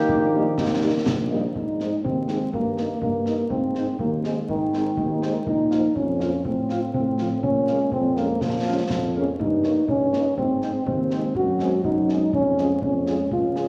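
A festive, spirited military-style march for wind band opens with a mellow euphonium carrying the second line up front, a distant, dark-toned cornet playing the melody in the background, and a tight trombone section holding sustained chords that end at 1.3 s. Almost at once a roomy tuba with vibrato lays down the bass, and concert bass drum and snare drum sit close in the mix, their cymbals sounding dusky. From 0.3 s a French horn section fills in the accompaniment with soft attacks, present yet tucked behind the euphonium. The cornet and euphonium both carry a light vibrato in a classical style, and the trombones have a smooth top. The music moves in a brisk 2/4 through a harmony built on flat-key chords such as Ab, Bbm7 and Eb7/G, and a scoring-stage reverb plus a layer of vinyl crackle give it an aged, spacious sound as this cut from a longer piece runs for about 13.7 seconds.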